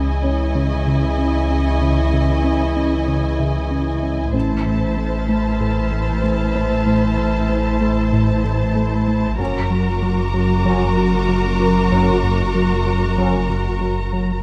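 In a straight 4/4 pulse, this tense, uneasy suspense cue, cut from a longer film score, sets a violin section on a smooth, lush melody above a second, focused violin line, with a dark viola section, an expressive cello section, a rich double bass section and clear, lightly vibrato French horn chords held in the background. Underneath, a fat, detuned sawtooth analog bass riff with a filter sweep sits beside a deep, punchy sine sub bass drone, while a high violin texture with portamento and a very quiet, boxy felt-muted upright piano, its action noise audible from 0.2 seconds, add unease. The harmony moves from C#madd9 to Am and then F#, placed in a moderate scoring-stage reverb and captured by close, detailed microphones.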